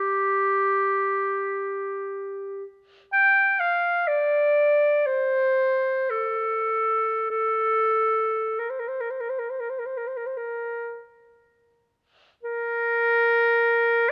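The rhythm moves freely in rubato, with the pulse drifting between 36 and 67 BPM over a loose 4/4. This short classical passage, taken from a longer piece, features a single clarinet playing alone in Bb major from start to finish, ranging from G4 to G5. The clarinet has a clear, vintage tone with a soft attack and sits up front in the sound. Close, detailed microphones and a light reverb keep its expressive line intimate. The mood is serene and nostalgic, and at 12.4 seconds the music turns to a new idea that carries it to the end at 14.1 seconds.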